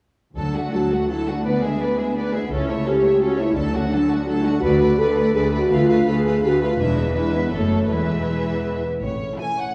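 Lively and spirited, this dramatic romantic orchestral passage in three-quarter time carries a focused, vibrato-laden violin melody over a second violin line, with lush violas in the background and a dark, distant French horn section holding sustained chords. A mellow, ringing harp plays arpeggios beneath, while cellos and double basses supply a smooth, even bass until 9.3 seconds, and soft-mallet timpani add a round stroke at 9.0 seconds as the harmony arrives on A. Wet recital-hall reverb surrounds this fragment of a longer piece.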